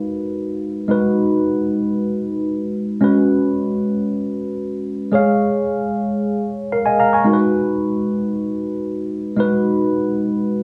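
A worn, slightly out-of-tune tine electric piano plays alone in free time, clean and up front with a phaser shimmer, moving through G#m7, C#7sus4/G#, C#69/G# and back to G#m7 in G# dorian, a glamorous, danceable disco fragment set in a moderate large-studio reverb.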